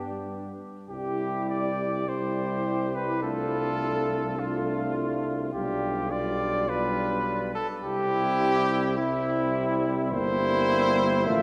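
A brass quintet opens together at the very start in a stately, classical passage at 104 BPM in 4/4 with a straight feel, centered on C major and drawn from a longer piece. Up front, the cornet carries the melody between E4 and E5 with a warm tone and light vibrato, while the trumpet adds a second line from D4 to G4. The mellow French horn and trombone fill in the accompaniment further in the background, the horn with light vibrato and the trombone with vibrato and a soft attack. The tuba anchors the bass from G1 to G2, its vibrato and soft attack rounding out the low end. The harmony moves from G through C, Dm7/C and G7/B back to C, arriving at C7/G near 10.1 seconds before the passage ends at 11.4 seconds. A lush church reverb with a long 3.5-second decay places the ensemble further back in the room, giving the whole performance a resonant, warm and stately air.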